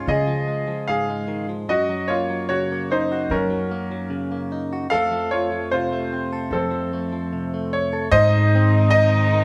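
Melancholic and reflective, this fragment of an acoustic folk-pop ballad sets a brilliant, up-front concert grand piano melody over clean, twangy picked electric guitar and a woody pizzicato upright bass, joined at 8.1 s by a rich bowed cello and a very quiet, intimate chamber string section holding soft sul tasto chords, all heard within the moderate reverb of a church or concert hall.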